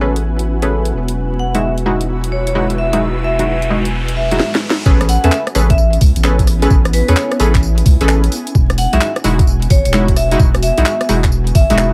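An ethereal, airy pad sustains Amaj9 and Emaj9 chords in the background, with a sidechain pump and ensemble chorus, while punchy, detuned chord stabs with chorus and delay and a thick, saturated sine sub bass sit up front, and a cloudy granular pad drifts above until 4.4 s. This soulful, sunny two-step UK garage cut runs at 130 BPM in A lydian, its 16ths swung at 65%. A layered electronic garage kit with cracking snare, handclaps, rim clicks, tambourine and warm hats enters almost at once, and from 1.4 s a bright, ringing vibraphone struck with hard mallets carries the melody between B4 and F#5. An electronic riser and a drum fill lead into the drop at 4.9 s, where a gritty, pitched-down, tape-warm kick thumps in under the groove. The mix is dry, with vinyl crackle running throughout this section cut from a longer piece.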